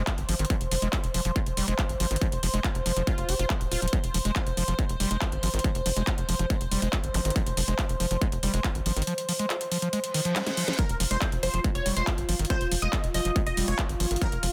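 A straight 4/4 psychedelic trance pulse at 140 BPM in F minor drives this intense excerpt, built on a distorted, up-front electronic kick, a techno kit of cracking snare, metallic hi-hats and handclaps, and a tight, punchy sequencer bass with a dark sawtooth pluck. Above them, a screaming, squelchy acid line carries the riff with distortion, chorus, dub echo and a resonant filter sweep running throughout, while an evolving wavetable pad holds morphing, detuned chords bathed in reverb, both pumping against the kick. A zap and a reverse cymbal sit in the background, with the cymbal rising into a drum fill at 10.4 seconds before a bright, detuned supersaw stab enters at 10.8 seconds, phased and echoed, all within a dense, heavily limited digital mix.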